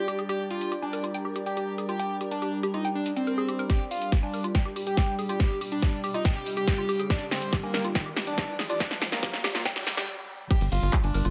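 This psychedelic, hypnotic excerpt of G minor psychedelic trance at 141 BPM opens with a gritty, screaming, guitar-like distorted lead carrying the melody through phaser and digital delay over a morphing wavetable pad and a soft, breathy background pad, all pumping against the sidechain, before a woody, warbling wave-folded pluck riff and a layered dance kit with a punchy snare, claps and filtered hats and cymbals join. An up-front electronic kick arrives at 3.7 seconds to drive a filter-swept build-up with a drum fill and a background riser, the build-up halts in a brief stop at 10.1 seconds, and a driving, saturated sawtooth sequencer bass lands on a low G at 10.6 seconds.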